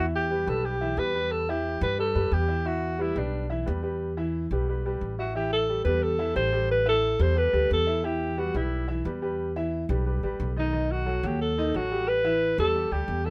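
Afro-Cuban jazz with a sultry, fiery mood, this 13.3-second cut from a longer piece features an up-front, breathy alto saxophone carrying an intimate, whispered jazz melody with light vibrato and a soft attack. It sits over warm, natural upright piano accompaniment and a dark, thumpy pizzicato upright bass on gut strings, all wrapped in light reverb.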